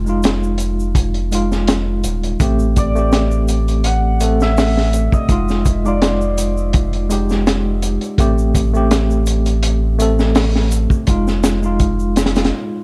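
A crunchy breakbeat drum kit sits up front in this smoky, dark trip hop excerpt at 83 BPM, its punchy kick, high-tuned snare and hi-hat carrying a gritty, saturated crunch from vintage 12-bit sampler grit and a rolled-off top. Beneath it, a soft dub sub bass runs deep and round with a fast attack and sustained notes, thickened by tube saturation. A worn, slightly out-of-tune tine electric piano, heard through a combo amp with tremolo and tape echo, holds the accompaniment across chords moving between Fm7 and Am7. An egg shaker sits bright and compressed in the background, shaken with soft hands. From 2.8 to 8.7 seconds a mellow, shimmering hammered dulcimer rings out the melody through dub echo, and the excerpt closes on a brief break at 12.5 seconds, all wrapped in dark, warm small-room ambience.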